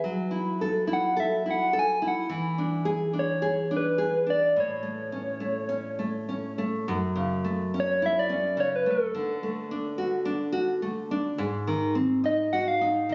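A soft, struck synth lead and a fingerpicked nylon-string guitar begin together, opening this tender, nostalgic fado fragment cut from a longer piece. The lead carries the melody in a round, warbling FM voice with a vintage character, its notes sounding with a quick attack and then decaying, colored by chorus and vibrato. Beneath it the guitar supplies the accompaniment with a deep classical tone, and finger squeak can be heard on the strings. Both parts sit up front, moving with a loose, rubato feel over a harmony that turns darker at 6.9 seconds, where the music enters a new section. A moderate plate reverb gives the sound a long tail, though the overall capture has the compressed quality of a phone recording made in the room.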